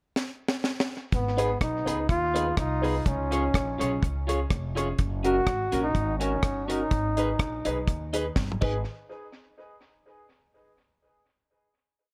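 A small room ambience surrounds this short, mischievous and driving ska piece, with tape echo on the drums, trombone and piano. Set at 124 BPM in 4/4 with a light swing on the eighths and in G# dorian, it opens with a pickup bar where a deep reggae drum kit plays a fill from 0.2 seconds. The kit is dry and up front, with a high-tuned snare, tight kick, hi-hat, crash, toms and a side-stick backbeat driving the ska beat. At 1.1 seconds a bright trombone takes the solo lead with smooth-topped call phrases built on short motifs and touched with light vibrato. Beneath it, a woody, growly pizzicato upright bass walks through G#m, C# and F# with chromatic approach notes. From 1.4 seconds a clean, picked electric guitar and a polished, present upright piano chop the off-beats, and a final drum fill leads into a closing hit.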